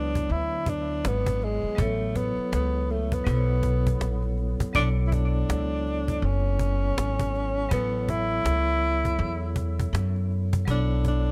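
A dark, warm small-room sound frames this nocturnal, mellow jazz-hop excerpt in B dorian, moving at 81 BPM with a swung sixteenth-note feel. Up front, a breathy tenor saxophone carries the melody in a whispered subtone with scooped notes and a tape echo, while a woody, growly pizzicato upright bass thumps underneath and a vibraphone struck with hard mallets rings out a metallic accompaniment through a fast motor vibrato. A snappy, close and dry cajon joins at 0.1 seconds, and the harmony moves from Bmadd9 through Aadd9 and Bsus2 to Bm9 when the second section begins at 4.7 seconds.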